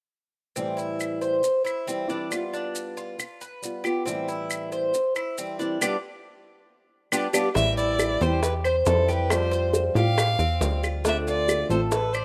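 A dark, boxy fingerpicked acoustic guitar with old strings opens this danceable Cuban son and guajira passage at 0.6 seconds, together with the bright, metallic arpeggios of a picked tres with double strings, up front, and grainy, mellow maracas held close. Woody claves enter at 1.0 seconds, and the groove moves in a straight four over a loop of minor-seventh and dominant-seventh chords, with a band accent toward the end of the opening section. At 7.6 seconds the second section begins as a warm, bowed violin takes the melody with smooth, even vibrato, a punchy, funky analog bass adds a fast-attack filter pluck up front, and tight, high-tuned bongos played with soft hands sit in the background. The harmony there shifts from Am7 through Fadd9 to Dm7. Light reverb and small room ambience give the whole a rough home demo feel, and it is cut from a longer piece.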